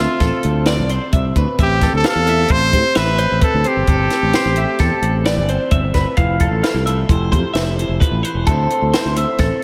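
Intricate and restless, this math rock and midwest emo fragment in A minor moves at 131 BPM in 5/4, with a brilliant, up-front trumpet carrying a scooped, lightly vibrato melody through analog delay until 5.5 seconds, over bright, twangy twelve-string arpeggios colored by phaser, a slightly broken-up lo-fi guitar through a small old amp with spring reverb, a growling overdriven fingered bass, and a compact cocktail kit with a high-tuned snare and tight kick, all set in a recital-hall reverb that gives a big arena sound as the chords move from Dm9 to Am9, Fmaj9 and Dsus2.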